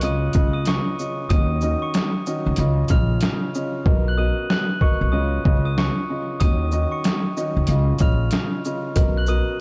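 A swung 94 BPM boom-bap groove in 4/4 drives this dark, moody hip-hop cut from a longer piece, its sampler-style drum kit pitched down, muffled and overdriven with a thumpy kick, medium-tuned snare and shaker, the hi-hats dropping out from 3.9 to 6.4 seconds. Up front beside it, a woody, gut-strung pizzicato upright bass anchors chords cycling through Dbadd9, Ebm7 and Bmaj7, while a mellow, vintage grand piano with audible action noise fills the middle and a bell-like glockenspiel struck with hard plastic mallets rings out the high melody through delay. Vinyl crackle and a cathedral-sized reverb give the whole mix a dreamy, soaked haze.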